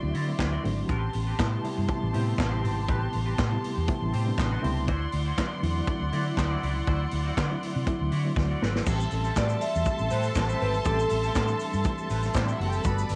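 Recorded on cassette in a small room, this driving, sultry disco excerpt at 120 BPM in A dorian rides on a punchy, up-front vintage drum kit with dark cymbals, handclaps and a rolled-off top, locked to a round, foam-muted fingered bass, while a reedy, slightly out-of-tune electric piano with fast tremolo, a twangy clean guitar washed in lush chorus and a soft, sul tasto string section fill out chords moving from D9 to Am9. After a drum fill, at 8.9 seconds a smooth, bowed violin section adds a second line and a grainy tube shaker sits in the background. At 9.4 seconds a metallic, ringing vibraphone with slow motor vibrato briefly takes the melody.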